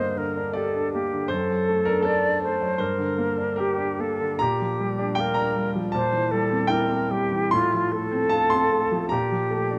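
Warm and lyrical, this romantic classical duo moves at a rubato 69-81 BPM in 4/4, with a silver concert flute sounding pure and metallic, its vibrato and soft attack up front, singing the melody over a smooth, vintage-toned grand piano accompaniment through a passage that opens on a G minor chord and settles into F major at 4.4 seconds, captured close and detailed in a recital hall's moderate reverb as a fragment of a longer piece.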